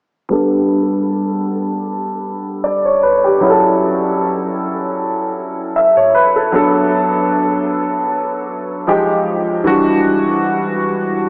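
A grand piano, natural and up front under lush chorus and a sweeping low-pass filter, plays sensual, longing R&B accompaniment at 77 BPM with a light sixteenth-note swing, moving through chords from A9sus4 and F#m7 to Fm9 and Em9 in a dreamy, reverb-soaked mix with a huge ambient tail and a small-speaker sound, in a brief passage cut from a longer piece.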